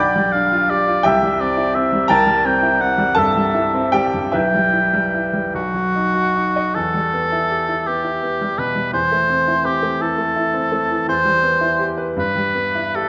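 Melancholic and solemn, this short romantic classical duo unfolds in 6/8 with free, rubato timing, the oboe carrying the melody up front with a warm tone, light vibrato and a smooth top. A clear, natural baby grand piano accompanies throughout, its harmony drifting from G7/B through C and C7 toward B before settling on E minor at 6.8 seconds. A moderate reverb, like that of a scoring stage, lends the pair a soft-edged, rounded glow, and the passage is cut from a longer piece.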